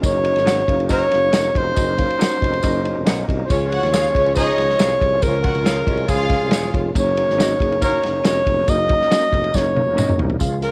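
A breathy, whispered alto saxophone sits up front and carries the melody from 0.1 s in this joyful, danceable slice of uptempo 1960s-style soul at 139 BPM in a straight 4/4. Underneath, a mellow tine electric piano plays background accompaniment, a very quiet reedy tonewheel organ holds sustained chords with key click and fast rotary speaker, and a soft-attack tuba carries the bass in a jazz style. A slightly broken-up, lo-fi electric guitar adds picked stabs in the background, while a tight horn section punctuates with brief second-line figures at 0.9, 4.4 and 7.8 s. A dark, floating violin section played sul tasto adds a bowed second line in the middle of the passage. The acoustic drum kit has a punchy kick, medium-tuned snare and dark cymbals, joined by a jingly, close tambourine. The harmony turns to Db and then returns to Gb6, after which a drum fill closes out the section. A light reverb and small room ambience frame this fragment cut from a longer piece.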